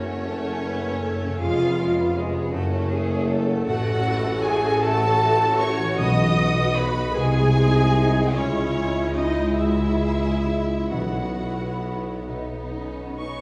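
Unfolding in a flexible, rubato six-eight, this lyrical classical passage, cut from a longer piece, moves with a gentle, breathing sway. A rich violin section carries the smooth, vibrato-laden melody high above, while a second violin section plays an expressive supporting line further back. A clear, focused viola section adds lush accompaniment, and a ringing, fingerpicked concert harp spins arpeggios in the background. The bass is shared by a bowed double bass section, a softly blended cello section and a warm tuba, giving the low end a deep, rounded foundation. Timpani struck with medium mallets sound briefly at 6.0 and 10.9 seconds, and an airy flute ensemble slips in with a tongued line at 13.2 seconds, just before the cut. A recital-hall reverb places the ensemble a little back in the room, lending the sound a gentle, enveloping glow.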